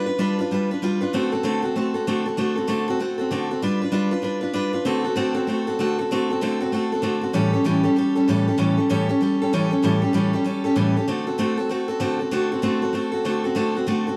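A picked steel-string acoustic guitar carries this short rock excerpt alone, its fresh strings giving a bright, full-bodied dreadnought tone that sits up front in the mix. The mood is upbeat and rollicking, driven by a quick 193 BPM in 4/4 with a 62% swing on the eighth notes. Set in D mixolydian, the guitar ranges from A2 up to B4 as it moves through a bluesy progression of G7, D7 and A7 chords before resolving back to D7 at 11.1 seconds. A moderate large-studio reverb lends the sound a sense of space, capturing the feel of a band playing live together in one room. The clip runs about 14 seconds, cut from a longer performance.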